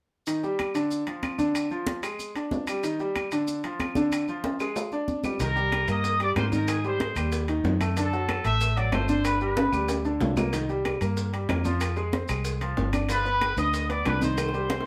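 Danceable and passionate, this salsa excerpt in C minor moves at a brisk 187 BPM, with a bright, present concert grand piano playing accompaniment from the start alongside ringing congas, metal-shell timbales and grainy maracas, joined moments later by woody claves in the background, all set in a wet studio reverb. At 5.4 seconds a round, foam-muted electric bass with a dark, punchy tone arrives up front together with tight, high-tuned bongos and a punchy trumpet section whose vibrato-laden melody returns at 13.1 seconds. Drum fills arrive around 4.4, 9.6 and 14.4 seconds, and the chords move from Ebmaj7, Dm, Ddim and G5 into Cm7, Abmaj7, D7 and G before closing on Cm7, Fm and G7.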